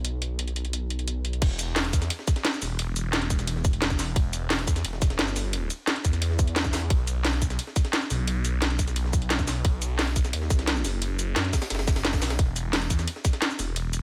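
The phased, detuned saw bass anchors the low end of this dark technical drum and bass excerpt, a thick, swirling unison tone with overdrive saturation, ranging from E1 to F#2 at 175 BPM in a straight 4/4. The mood is aggressive and mechanical, and a drum and bass kit plays from the start, its cracking snare and metallic hats sitting up front beside crash cymbal and shaker, with a small-room character. At 1.4 seconds the drop arrives, bringing in a tight, layered electronic kick and a gritty, compressed sampler-style breakbeat kit. That breakbeat layer stays in the background, its high-tuned snare, hi-hat and ride cymbal thinned by high-pass filtering. A digital ambience surrounds the mix, and the kick drops out at 13.3 seconds while the bass and both kits carry through to the end.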